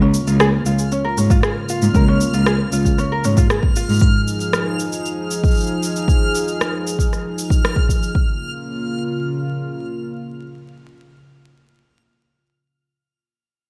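Folktronica at 116 BPM in Db major, this playful excerpt of a longer piece opens with light, thumb-plucked ukulele arpeggios through a digital delay and an up-front, dark, woody bowed cello bass with vibrato, both stopping at 4.0 s, set over a smooth, detuned sawtooth pad with chorus, a bright reversed granular texture swelling in its own reverb, and tape-warm electronic cabasa and rim click, while a deep, up-front kick enters at 1.3 s, all beneath a layer of vinyl crackle with little reverb.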